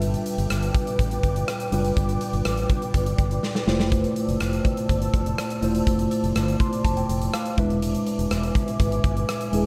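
A steady, straight 4/4 pulse at 123 BPM drives this short cut from a 1980s-style pop piece, its mood urgent and nostalgic. A big rock drum kit sits up front in a big room, with a punchy kick, a medium-tuned snare, rim clicks and hi-hat, and it plays a drum fill between 3.4 and 3.9 seconds. Beneath it, a fretless electric bass, direct and amped, holds the low end with a warm tone, while a clean tine electric piano heard through its built-in speakers carries the accompaniment and adds a fill from 6.4 to 7.8 seconds. High above, an ethereal, airy pad of detuned sawtooth and triangle voices in unison sustains chords with a slow attack, long release, moving notch, ensemble chorus and its own reverb, sitting dark and low in the balance. The harmony moves from G7 to Fmaj7 and then E7, and the whole production is dark and warm with light reverb.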